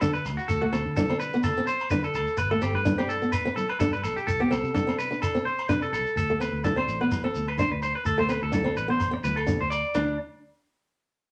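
Danceable and warm, this highlife guitar band excerpt moves at 127 BPM in 4/4 with a light swing on the sixteenths, and a bright, twangy clean electric guitar sits up front playing arpeggios over a boxy fingerpicked acoustic archtop whose finger squeaks can be heard. Beneath them a dark, round, foam-muted electric bass anchors the D5, G and Csus2 changes, while grainy, close shekere and hard-handed, thin-skinned congas with a vintage, band-limited tone keep the groove moving, joined at 0.3 seconds by ringing, saturated agogo bells in the background. A wet studio reverb gives the group a snug room sound before the chords drop away at 9.9 seconds.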